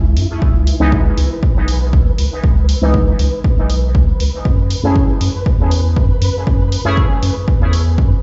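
Heard through a big sound system in a bare room and bathed in large studio reverb, this dub techno excerpt has a nocturnal, meditative pull, its highs capped at 7.7 kHz. A punchy analog kick sits up front beside a round, deep bass that pumps to the sidechain, while a faint electronic hi-hat shares the same large room and a grainy, flickering granular texture glimmers behind with its own reverb. From 0.8 s a juicy, resonant sawtooth polysynth plays stab chords coloured by filter sweeps, ring modulation, chorus, phaser and dub echo, shifting harmony at 4.5 s.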